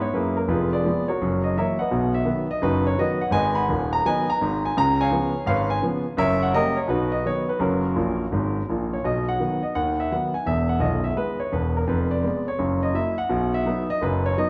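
A clear, up-front concert grand piano with deep bass plays solo stride jazz in B major at a swung 168 BPM, exuberant and playful across two matching passages, adding a quick fill from 8.0 to 9.0 seconds, all set in a moderate concert-hall reverb and colored by the warbly pitch drift of worn old cassette tape in this short excerpt from a longer piece.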